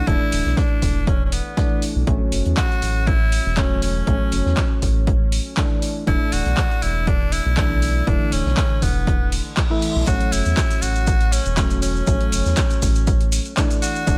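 A small-room ambience wraps this soulful, relaxed deep house excerpt, moving at 120 BPM in 4/4 with a light swing on the sixteenths and set in A major, tuned slightly flat to A4 = 436 Hz. A punchy, tape-warm electronic kick drives the groove alongside a round, deep analog bass whose dark, sustained sawtooth-and-sine tone pumps against the sidechain, while a punchy analog drum machine adds handclaps and hi-hat from 0.3 seconds. A compact cocktail kit sits very quietly underneath with a dry, high-tuned snare and hi-hat, and hollow, mellow organ stabs with subtle chorus and sidechain pumping outline the shift between E7sus4 and A6. Over this, a raspy, gritty tenor saxophone carries the melody in a forceful, pop-style solo with vibrato, trailed by dub echo. A reverse cymbal leads into the return of A6 at 10.1 seconds, where grainy maracas join in the background for the remainder.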